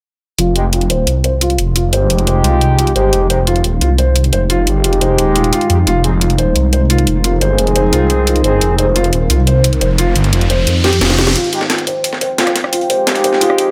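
A light digital ambience frames this mechanical, dark slice of technical drum and bass. A cracking, layered electronic kit and an up-front, swirling detuned saw bass with phaser and tube saturation sit beneath muted, boxy felt-piano arpeggios with audible action noise, tape echo and a filter sweep, while smooth-topped brass ensemble stabs and a deep, warbling pad of sustained chords in the background carry the harmony from Fm7 to Ab. After an electronic riser from 9.7 s and a drum fill at 10.8 s, the bass stops at 11.3 s and a gritty, compressed sampler-style breakbeat kit with a high-tuned snare joins at 11.4 s for a filtered build-up as the brass returns.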